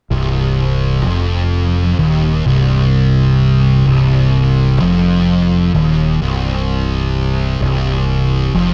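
This is a heavy, sludgy metal piece, cut from a longer work, moving at a slow, straight crawl in four. Two thick, fuzz-soaked electric guitars play a picked, distorted riff low in their range, both sitting up front from 0.1 to 8.7 seconds. Beneath them, a fingered electric bass with a round, direct tone and a touch of overdrive holds down the bottom end, also up front. The whole passage rests on a single minor chord, giving it a brooding, weighty feel. The production is dark and dry, with little reverb, so the fuzz and low end press close to the listener.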